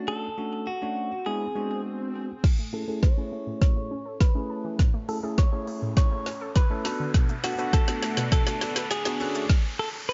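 A deep house drum kit sits up front in this upbeat, summery dance-pop excerpt at 102 BPM in A major, its deep kick, woody snare, smooth hats, shaker and crash arriving at 2.4 seconds as a build-up and a drum fill begin. From the opening, a bell-like tine electric piano with subtle chorus and sidechain pumping carries the chords, while a direct-recorded clean electric guitar plays the melody, twangy and compressed, with spring reverb and delay. An electronic swell leads into the build, then a riser and a filter sweep run through to the end, while a round, detuned analog pluck adds arpeggios in the background with chorus, delay and pumping. From 7.1 seconds a shimmering, retro pulse-width pad with slow attack holds sustained chords far back in the mix. The harmony moves from Dmaj7 and E7 to Amaj7, Bm7 and back to Dmaj7, under light reverb and a soft-topped sound with nothing above 7.6 kHz.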